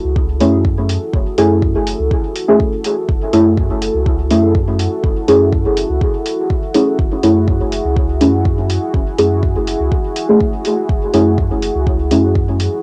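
Dub techno at 123 BPM in F# minor, nocturnal and deep, this short cut from a longer piece rests on a single F#m7 chord: an up-front, warbling, detuned chord stab with chorus, phaser, dub echo and a filter sweep sits over a moody sawtooth pad with a slow attack and sidechain pumping, a clean sine sub bass with tube saturation, a layered electronic kick and a muffled, pitched-down hi-hat, all captured as a home cassette recording in a small booth-like room.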